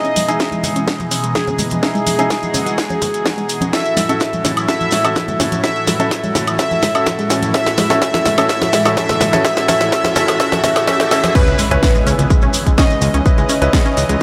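Dreamy and expansive, this progressive house excerpt moves at 126 BPM in a straight 4/4, building from Emaj7 to A over a catchy, full-bodied sawtooth lead with delay, a lush, phased and chorused pad that pumps to the sidechain, a background pluck arpeggio under a filter sweep, and clear grand piano stabs. A punchy, tape-tinged kick and a house kit with a cracking snare, woodblock, hats and crash drive the groove, with grainy maracas, ringing soft-handed congas, and a very quiet riser and impact arriving at 7.7 seconds. At the 11.4-second drop the harmony shifts to C#m7, and a moment later a fat, thick, detuned analog bass comes up front, all set in light digital reverb.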